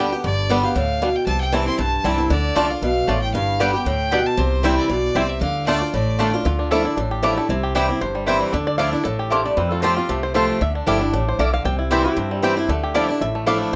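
A swung 231 BPM bluegrass pulse in 4/4 drives this rustic, haunting excerpt in D dorian, where a growly upright bass and a bright, boxy picked swing guitar sitting up front carry the accompaniment beneath a twangy fingerpicked banjo with tape echo and a clear fiddle with light vibrato, soon joined by woody double-string mandolin stabs, before the fiddle drops out at 6.3 seconds, the banjo takes a solo from 6.5 seconds, and a nasal, metallic slide lap resonator guitar, also with tape echo, adds a second line from 9.3 seconds in a moderate studio ambience.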